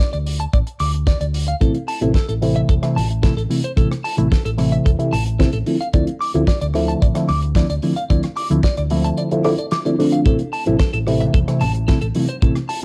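Sleek and cosmic, this nu-disco excerpt moves at 111 BPM in A minor, with a bright, compressed clean electric guitar riff coloured by subtle chorus, analog delay and cassette tape, over a dark, round hollow-body short-scale fingered bass. A tight, dry kick sits up front beside a damped 70s kit of hi-hat, rim click and fat snare with a rolled-off top, while a reedy, worn and slightly out-of-tune electric piano with phaser enters at 1.6 seconds to carry the Am and Dm7 chords. Very quiet, distant congas join at 10.7 seconds, and the whole piece has the moderate reverb and tape character of a home cassette recording.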